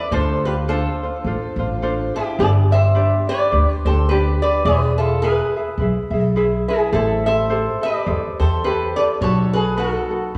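A lap resonator guitar carries the melody up front in this relaxed, sunny Hawaiian excerpt, its slide lines played with fingerpicks and sounding metallic and nasal. Beneath it, a light, fingerpicked ukulele supplies accompaniment throughout, while a pizzicato upright bass with steel strings joins at 0.1 s, dark, woody and thumpy, sitting close to the listener. The tune moves at 106 BPM in 4/4 with a gentle swing of 58% on the eighth notes, in A minor and tuned to A4 = 441 Hz. The harmony passes through Dm7, G, E, Am7 and B7 over the brief passage, which is cut from a longer piece. A reverberant recital-hall acoustic, like a church or concert hall, wraps the acoustic trio in a spacious wash.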